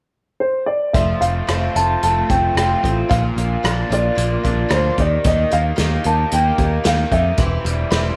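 A dark, mellow concert grand piano opens this nostalgic folk rock and heartland rock excerpt at 0.4 s, carrying the melody in its upper register. At 0.9 s the band arrives. A picked twelve-string acoustic guitar adds woody, boxy old strings and an octave-doubled shimmer under subtle chorus, while a growly, bright picked electric bass sits up front. An unplugged drum kit, played with bundle sticks on hi-hat, kick, rim click and snare, sounds roomy and distant, with a tight kick and a medium-tuned snare. A raw garage guitar joins at 1.0 s with an overdriven, double-tracked riff as the straight 4/4 harmony moves from F to Bb and Eb before landing on C/E. A small room and a moderate echo-chamber reverb give the piece a warm glow.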